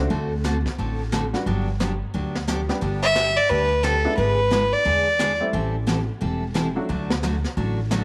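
Playful and down-home, this short cut from a longer western swing number rolls along at 177 BPM in 4/4 with swung eighths in G major. An upright bass plays pizzicato throughout, its woody, thumpy tone sitting up front, while a jazz brush drum kit keeps time with brushes on a high-tuned snare, hi-hat and a punchy kick in a small-room sound. A bright, picked steel-string acoustic guitar adds full-bodied accompaniment with audible finger squeak, and a detuned, jangly honky-tonk upright piano lends vintage color until 6.9 seconds. From 3.0 to 5.4 seconds a single bowed fiddle steps forward with a clear, biting tone, light vibrato and an airy bow, carrying a slapback echo. The chords move from D7 through Gmaj7, G, E7/G#, Am7 and back to D, all set in a moderate spring reverb.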